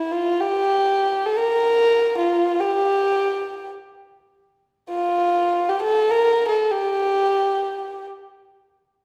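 Longing and hypnotic, this short passage of makam music unfolds in free time in makam huseyni on G, tuned to A4 = 441 Hz. A single kamancheh carries the whole passage as a solo voice from 0.0 to 8.1 seconds, its dark, boxy tone set close and up front. The bowing has an airy edge, with light vibrato and portamento gliding between notes to give the line an intimate, searching quality. A wet recital-hall reverb with a 1.6-second decay lets the phrases bloom into a church-like space, and the sound lingers briefly after the bow stops. Cut from a longer performance, it feels like a quiet meditation rather than a complete statement.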